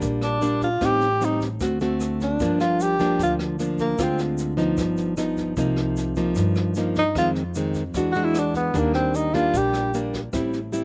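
A breathy tenor saxophone carries the melody up front in this smooth, melancholic bossa nova excerpt, its mellow subtone coloured by vibrato, scooped notes and a touch of slapback echo, playing from 0.2 to 4.2 seconds and again from 7.0 to 10.0 seconds. Beneath it, a fingerpicked nylon-string guitar sits close in the mix with a classical touch and its own slapback echo, moving through jazz chords such as Ebmaj7, Am7b5, D7 and Gm7. An upright bass, plucked and woody, anchors the low end on steel strings. A jazz drum kit played with brushes adds a high-tuned snare, rim clicks and a boomy kick in a natural small-room sound, while a grainy, bright tube shaker sits quietly at the back. The overall sound is dry and close, with little reverb, giving the short clip an intimate, straight-feel groove.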